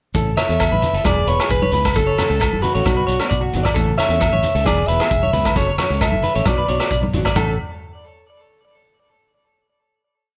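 This is a carefree, joyful highlife guitar band piece in A major at 133 BPM in a straight 4/4, cycling twice through A, E, F#m and Bm before a closing moment at 7.4 s. A vintage drum kit sits up front with a punchy kick, dark cymbals and a rolled-off top, playing a highlife groove across hi-hat, ride, rim click and toms. A round, foam-muted fingered electric bass carries a syncopated riff. Thick-skinned congas struck with hard hands and a grainy shaker pattern on shekere sit in the background, while ringing agogo bells join at 0.4 s with a low bell time line. A bright, twangy electric guitar at the edge of break-up repeats an arpeggiated ostinato through tape echo, while a fingerpicked steel-string acoustic guitar with fresh strings strums upper chord shapes quietly behind it. Also entering at 0.4 s, a warm alto saxophone leads with a soft-attack subtone and a jazz-style, motif-based melody in period phrases, and the whole track sits in light reverb.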